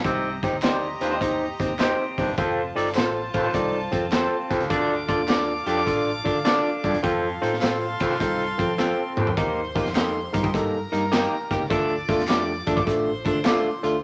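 A swung eighth-note groove in four drives this uptempo 1960s-style soul passage, carried by a crunchy breakbeat kit with a punchy kick, a medium-tuned snare and a saturated, rolled-off top, while a tambourine, tube shaker and group handclaps sit in the background. Underneath, a vintage foam-muted fingered electric bass gives a round, amped low end. Up front, an overdriven tine electric piano pushes the harmony through a combo amp with a gritty edge, and above it a studio violin section floats a soft-attack, sul tasto second line. Two lo-fi, slightly broken-up electric guitars through a small old amp sit further back: a picked one plays a compressed riff, and a darker, fingered one adds stabs soaked in spring reverb. A raspy, forceful baritone saxophone riffs with vibrato through a drum fill at 8.8 s, dropping out at 9.3 s as the chords shift to a new section, giving this cut from a longer piece a driving, urgent mood in a moderate studio reverb.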